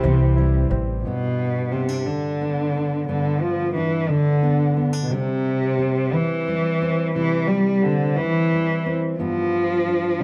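A rich, smooth bowed cello with light vibrato carries this hopeful, pastoral acoustic folk excerpt in G mixolydian, moving at a slow 59 BPM in a straight 6/8 and taking an even, up-front solo from 1.0 s to the end. In the opening moments a barely audible picked mandolin stops by 0.7 s, a growly, woody pizzicato upright bass drops out as the solo begins, and a brilliant upright piano's short-sustain arpeggios stop by 1.1 s. A full-bodied fingerpicked jumbo steel-string guitar keeps the accompaniment going over C and G chords throughout, all set in a dark, moderately reverberant large-studio sound.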